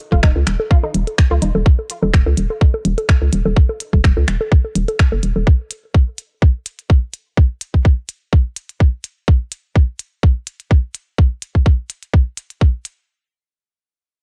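Gritty and dry with a cassette-saturated tint, this clinical, sparse minimal techno excerpt opens with a squelchy, detuned blip pluck playing a short riff through a filter sweep, phaser and tape echo until 1.5 s, over a hollow, bouncy FM bass that pumps beneath a tight, up-front electronic kick, while tape-echoed analog bongos drop out with the bass at 5.4 s and an overdriven click kit of finger snaps and clicky hi-hats carries on to the close.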